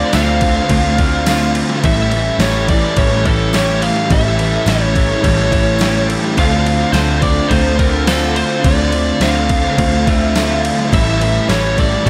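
A crisp 8-bit drum machine with a thumpy kick and a large-room ring sits up front in this brooding, melancholic shoegaze and dream-pop rock excerpt at 106 BPM in D minor, alongside a fuzz lead guitar melody soaked in tape echo over a Dm7 to A7 progression, while a bright, shimmering twelve-string acoustic with finger squeak, a scooped, direct clean electric riff trailing reverse reverb, a thick, chorused fuzz guitar riff, a dark, round, foam-muted bass and a jingly background tambourine fill out the hazy, lightly reverberant mix.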